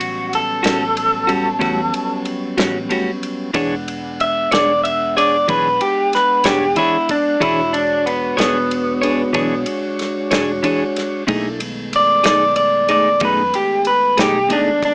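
Rollicking and soulful, this slow 12/8 blues excerpt at 62 BPM in E mixolydian moves through A13, E13 and B13 chords, with a slightly broken-up, lo-fi lead guitar singing up front through a small old amp, a clean, compressed electric guitar entering at 0.6 s to accompany with harmonic tremolo, a soft, flute-like tonewheel organ holding sustained chords through a slow rotary speaker, a dark, round, foam-muted bass underneath, and a natural small-room drum kit with punchy kick, medium-tuned snare and ride cymbal, all set in light reverb with a small-speaker sound.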